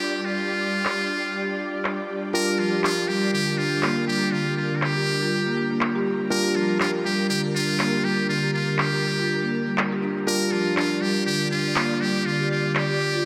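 A swung sixteenth-note groove at 121 BPM in 4/4 drives this hypnotic, earthy afro house excerpt in G minor pentatonic, resting on a single Gm7 chord throughout. Electronic cabasa and handclaps, tape-warm and softened by low-pass filtering in a small room, carry the pulse, while a worn, slightly out-of-tune tine electric piano, lightly overdriven through a combo amp with tape echo, punctuates with stabs. An ethereal, airy pad of detuned saw and triangle tones, thickened by ensemble chorus and its own reverb, holds sustained chords underneath. Up front, a close-miked trumpet with a metal mute plays a buzzy, thin, brilliant melody with light vibrato, trailed by tape echo. At 2.3 seconds a woody marimba, struck with soft mallets on rosewood bars, joins with round, mellow arpeggios. The whole mix is drenched in a wet church reverb with a 3.4-second tail, giving it a dreamy quality.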